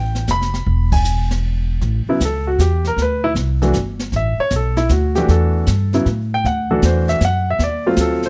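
Close, detailed microphones and a dry room put this short jazz piano trio cut front and center, with the piano and upright bass both sitting up front. In a lilting 3/4 at 156 BPM with a firm swing on the eighths, the mood is warm and playful. The baby grand carries the melody with a natural, short-sustained tone across a range from C#3 to B5, while the pizzicato upright bass, woody and thumpy on steel strings, anchors the low end from E1 to A2. A brush kit sits lower in the mix, its medium-tuned snare, hi-hat, ride cymbal and boomy kick giving a soft studio-room feel. The full band hits an accent at 0.9 seconds, and from 1.8 seconds the piano takes a solo through the rest of the cut. Beneath it, the harmony moves from A through D7(no3), Em7 and Dadd9 before landing on a D#dim7 near the end.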